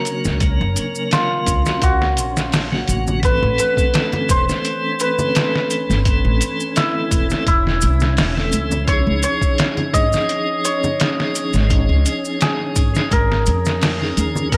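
A bright, shimmering hammered dulcimer carries the melody up front with dub echo and 12-bit sampler grit, over a lightly overdriven tonewheel organ with key click, slow rotary speaker and tremolo, and a grainy, flickering texture in the background; a compressed, pitched-down sampler-style drum kit with a thumpy kick, close and dry maracas and congas, and a woody pizzicato upright bass join at 0.1 and 0.3 seconds in this smoky, dark trip hop excerpt that moves through F#, Am and C#add9 in a small room.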